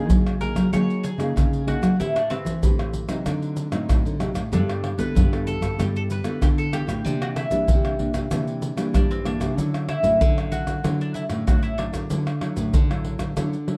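A mellow, round picked mandolin melody opens this joyful, festive samba and choro excerpt over a full-bodied, fingerpicked nylon-string guitar and a thumb-plucked nylon-string bass line, with a close, up-front percussion group of maracas, pandeiro, tamborim and deep surdo joining at 0.1 seconds, all set in a dark production with moderate studio reverb as the chords move from F#69 through Am9, D7b9, G69 and C9 to Dmaj9.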